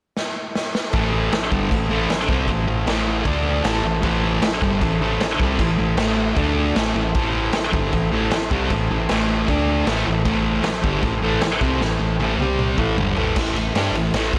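A thick, double-tracked fuzz guitar sits up front, driving a distorted, picked riff through this swaggering, gritty garage rock excerpt, which is cut from a longer piece. The raw drum kit starts things off with a fill before the band enters at 0.9 seconds, its punchy kick, medium-tuned snare, toms, crash and ride sounding saturated and dark, with a rolled-off top and the ring of a bright stone room. Underneath, a deep sub bass with an added octave holds full, sustained notes with a fast attack. Further back, an overdriven vintage combo organ with light vibrato sustains mellow chords, breaking out for a short fill at 3.3 seconds. The riff circles around A minor with brief moves to D and C, and a second drum fill from 11.8 seconds leads into a short closing section at 13.4 seconds, all wrapped in light reverb.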